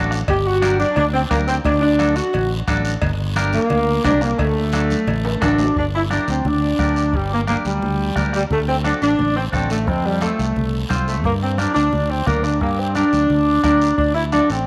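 A fingered electric bass and a bright, clean semi-hollow electric guitar open this fiery, danceable cumbia, quickly joined by bombo, guiro, congas, cowbell and timbales, and a mellow saxophone section carrying the melody. At 175 BPM in a straight 4/4, the music sits in G harmonic minor, moving between G minor and D before settling into G minor from 5.8 s, where F and a closing D7 enter the progression. The saxophone section is smooth-topped, tight and jazz-styled, sitting up front alongside the warm, amped bass, while the picked hollow-body guitar fills in beneath. Among the percussion, the raspy guiro and soft-beater bombo sound in a live room, the congas are thin-skinned and very quiet, and the ringing, vintage, band-limited cowbell and timbales stay in the background until their part ends at 5.7 s, during a drum fill that runs from 5.3 s. A moderate echo chamber reverb gives the ensemble its space in this section cut from a longer piece.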